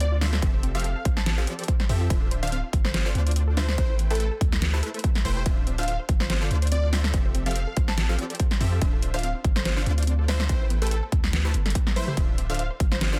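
A dense, heavily limited modern master wrapped in digital ambience carries this dreamy, bittersweet future bass excerpt in D dorian at 143 BPM, felt in half-time with a light swing on the 16ths. An up-front, deep sine 808-style bass and an overdriven, punchy electronic kick entering at 0.4 s anchor the low end, while an overdriven dubstep kit with a deep snare, hi-hat and toms, re-recorded in a small room, drops a fill at 12.0 s. Detuned sawtooth supersaw stabs push a sustained riff with a filter sweep, a lush unison pluck spins arpeggios in the background, and a catchy plucky unison lead with a noise layer sings the melody through chorus, with dub echo on the lead and pluck and sidechain pumping on the lead, pluck, stab and bass, over a cycling Fmaj7, Dm7, Am9, Dm7 progression.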